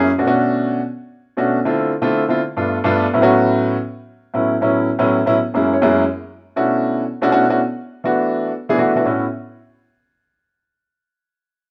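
Lively and danceable, this short jazz excerpt in A major at 162 BPM features a warm, natural grand piano playing solo and up front from 0.0 to 9.2 seconds, spanning F#2 to E5 through rich chords like Bm9, G9 and A69, with a fill at 5.4 seconds before the harmony shifts to Bm11 at 6.1 seconds, all heard in a stone room with moderate reverb.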